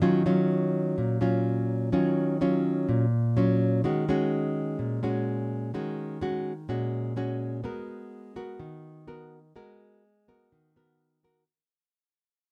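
This smooth, wistful bossa nova excerpt at 126 BPM in Eb minor features a solo fingerpicked nylon-string guitar with a classical, up-front acoustic tone, moving from Ebm9 to Ebm7 and Abm9 in a small, reverberant room before fading out from 3.8 seconds until it ends at 11.5 seconds.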